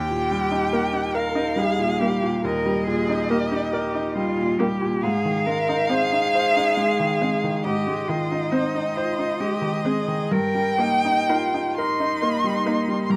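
Close, detailed microphones and light reverb give this recording an intimate, clear sound, with the violin and piano up front and the viola set at a distance in the background. It is a serene, slow romantic movement for piano quartet in 12/8 with a rubato feel, taken from a longer piece. A single violin carries the melody high in its range, its tone warm and smooth on top, shaped by expressive vibrato and portamento. Beneath it, one cello sings a second line with a rich, even voice, while a bright, brilliant baby grand piano supplies a natural-sounding accompaniment across a broad span. The viola joins at 0.7 seconds, adding its own expressive vibrato and portamento to the accompaniment as the harmony moves gently from Eb to Ab and then to Eb/G.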